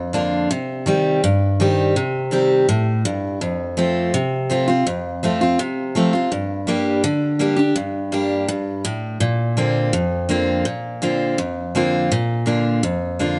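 Country solo piece for picked steel-string acoustic guitar at 165 BPM in Bb major, sunny and nostalgic, its bright, full-bodied dreadnought tone sitting up front in light reverb as the chords move from Cm through F and Gm to a Bbadd9 before settling on Bb at 12.1 seconds, in this short cut from a longer piece.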